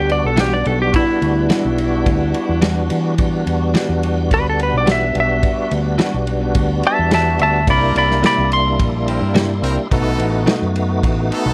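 A straight-eighth soul blues groove at 107 BPM in E minor sets a smoky, soulful mood in this cut from a longer piece, as a dark, compressed lap steel carries an up-front slide solo over a full, lightly overdriven tonewheel organ with key click and slow rotary swirl, a growly, round fingered bass, a small-room drum kit with a punchy kick and dark cymbals, and bright, direct-recorded guitar stabs set in the background with ensemble chorus and tape echo, before a brilliant horn section adds sustained chords from 7.7 s as the harmony moves from Em9 to C7 and then B7.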